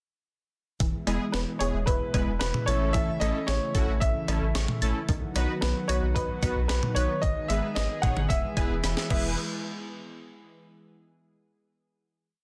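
Synth-pop in E major at 112 BPM, this short, complete piece is bright and upbeat, launching straight into a full chorus at 0.8 seconds and closing on a final hit that rings out from 9.4 to 11.5 seconds. A gritty, sampler-style breakbeat kit sits up front with a thumpy kick, medium-tuned snare, hi-hat, crash, cowbell and syncopated toms in a drum-machine beat, capped by a fill just before the end. Beneath it, a round, deep analog bass runs a sequenced line, while a thick, warbling unison pad with chorus holds sustained chords and a punchy detuned pluck with tape echo ripples through rising and falling eighth-note arpeggios in the background. Bold, fat synth brass with chorus and vibrato joins at 1.1 seconds with off-beat triad chords, and a natural-sounding baby grand piano, touched with tape echo, carries a motif-based melody from 1.3 seconds. The harmony moves through E, A, B and G#m before returning to E, all set in light digital ambience with a dense, heavily limited modern master.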